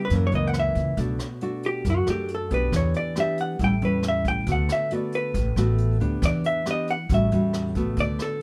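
A sophisticated, breezy bossa nova passage in 4/4 with a straight feel, cut from a longer piece. A vintage hollow-body electric jazz guitar carries the melody up front as a solo through the first 8.0 seconds, its picked, clean tone dark and compressed. Beside it, a classical nylon-string guitar, also up front, supplies fingerpicked accompaniment, with finger squeaks audible on its strings. An upright bass with steel strings plays pizzicato, sounding woody and growly. A brushed jazz kit sits distant and roomy, with hi-hat, rim click and a boomy kick. The recording is dry, with little reverb, as the harmony moves through F#7, Bm7, Em7, A7, D6 and Em7 again before closing on A13 at 7.1 seconds.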